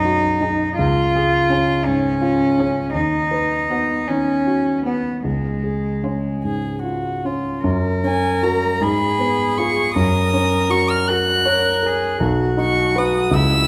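Serene and lyrical, this slow romantic movement for piano trio unfolds in F# major at 50-56 BPM in dotted quarters, in a lilting 6/8 shaped by flexible rubato, with tuning set to A4 = 439 Hz. A dark, mellow concert grand opens the passage with deep bass and short-sustained, smooth chords, while the cello carries a second line that sounds pure and floating, its soft attack and sul tasto bowing giving it a distant glow. At 0.4 seconds the violin enters with the melody, intimate and airy, with light vibrato, a gentle onset and a sul tasto touch that sits close to the listener. The opening section moves through G#m7/B, C# and B/D#, and at 7.6 seconds a second section settles onto F#, passes through Fdim/Ab, and arrives on B. All three players sit up front, captured by close, detailed microphones in a recital hall with moderate reverb that gives the vintage-tinged piano and the warm strings a soft halo. 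This fragment is cut from a longer piece.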